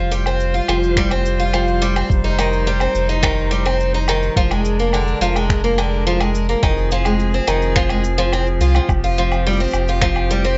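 A picked twelve-string acoustic guitar, dark and shimmering with tape echo, plays up-front arpeggios in this wistful, intimate folktronica excerpt in F dorian at 106 BPM, riding over sustained chords from a rich, bowed string quartet with smooth vibrato, a round sine sub bass, overdriven electronic shaker, woodblock and finger snaps, and a soft overdriven electronic kick that enters at 1.0 seconds, all under light reverb as the harmony moves from Fsus2 through Cm/F, Bb7/F and Ab6/F back to Fsus2.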